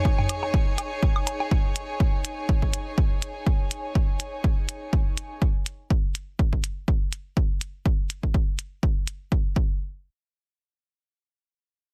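A punchy, tape-warm analog kick drives this sparse, quirky minimal techno excerpt with swung sixteenths, alongside clicky up-front hi-hats, a brief passage of dry electronic toms and woodblock with tape echo near the start, and a dark, intimate bowed chamber string section with soft attack, light vibrato and sidechain pumping that opens the excerpt over a G#sus4 chord and fades out by 5.4 seconds, set in a dense, heavily limited modern master with little reverb.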